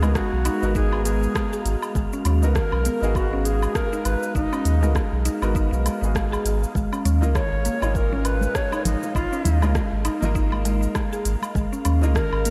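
Hypnotic and mystical, this organic downtempo excerpt in G# dorian moves at 100 BPM with a gentle 16th-note swing. A bright, reedy, airy Native American-style wooden flute with vibrato and delay carries the melody at a distance, while a felt-muted upright piano with delay sits softly in the background. A warbling, nostalgic lo-fi tape-like pad holds chords, and a woody FM mallet-like synth pluck with chorus and delay plays arpeggios. A warm, round sine sub bass sits up front, pumping with sidechain alongside the pad and piano. A tape-toned organic electronic kit of cabasa, smooth hats, rim click and woodblock plays alongside a deep electronic kick. A breathy, wind-like tuned noise texture drifts in the background, and very quiet, close, dry congas and bongos enter at 7.1 s. The harmony shifts from G#m7 to D#sus2/G# at 6.8 s, all in a dreamy mix soaked in lush hall reverb.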